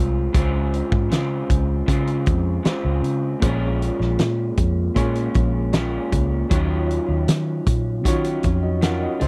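This mellow, hazy snippet of indie pop with a bedroom-pop lean moves at an unhurried pace in a straight four, cut from a longer piece. An electric guitar through a small old amp sets the harmony from the first moment, its dark, slightly broken-up, lo-fi tone softened by subtle chorus and vibrato. A vintage muted fingered bass sits up front alongside it, round and foam-muted, while a loose indie drum kit arrives at 0.3 seconds with a fat snare, punchy kick and hi-hat that sound saturated and gritty with a rolled-off top. At 3.4 seconds a worn tine electric piano joins, clean yet slightly out of tune and heard as if through built-in speakers, with a cassette-tape tint. The chords drift from Dbmaj7 to Bbm7 to Ebm9, and the dry, close recording has the intimate feel of a 1970s-style studio.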